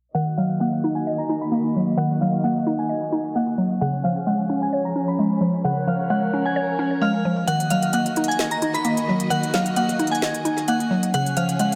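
Dark and hard-hitting, this half-time trap and hip hop excerpt in Eb minor moves at 131 BPM, with a crystalline FM synth bell carrying the melody high over a woody, warbling mallet-like pluck, both treated with chorus and tape echo, while a lush bowed string section holds sustained chords beneath, shifting between Ebm and Db. A filter sweep runs through the opening until 7.5 seconds, when a trap kit of crisp hats and a woody snare enters with tape echo, the kick muted. The whole mix sits in echo-heavy digital ambience with a low-pass filter.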